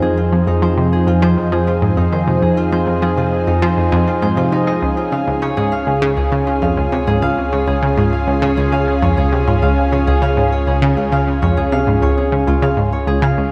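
An analog pluck sits up front in this cosmic, expansive piece of ambient, sequencer-driven space music, playing a low riff with a round, detuned sawtooth tone that has a quick attack and decays, colored by chorus, analog delay and shimmer reverb. Beside it, a lush unison pad holds sustained chords, its thick, warbling vintage sound blending sawtooth and square waves with a slow attack and long release, treated with chorus and shimmer reverb. Higher up, a concert harp rings out fingerpicked arpeggios, its acoustic tone carried by analog delay and shimmer reverb. Underneath, a deep sine sub bass sustains the low end. All four parts play throughout this 13.5-second passage cut from a longer piece, as the harmony moves from Fm7 to Db at 4.8 s, and a wet plate reverb with a 3.5-second tail lends the dark, warm production its spacious depth.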